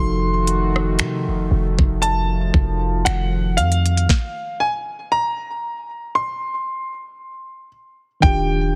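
Smooth and romantic, this contemporary R&B excerpt moves at a slow 58 BPM in 4/4 with a light swing on the sixteenths. A clear, slightly worn concert grand piano carries the melody up front, its short-sustained notes trailed by a digital delay, while a mellow tine electric piano fills in the accompaniment beneath it. A shimmering, retro pulse-width pad holds sustained chords, coloured by chorus and sidechain pumping. Underneath, a deep, boomy 808-style bass with a fast attack and decaying tail sits prominently in the mix. The electronic trap kit enters at 0.5 seconds with a knocking kick, sharp soft-clipped snare, crisp hi-hats, finger snaps and rim clicks, and the band hits a stop at 4.1 seconds before the hi-hats drop out at 8.2 seconds as the harmony settles from F7b9 onto Ebmaj9. The whole is set in a digital ambience with a dense, heavily limited modern master.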